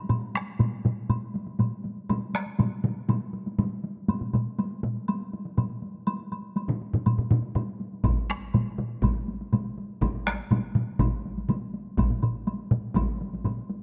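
Driving and ceremonial, this short cut from a longer Japanese traditional taiko drum ensemble piece moves at 121 BPM in a straight 4/4, with two taiko layers struck with hard and heavy sticks sounding up front from the first moment, one ringing in a live room and the other close and dry. A woody, dry woodblock sits further back throughout, while another heavy-stick taiko part in a small room joins at 2.1 seconds and a further hard-stick taiko layer arrives at 8.0 seconds. Light reverb and a small room ambience give the whole a rough home demo character.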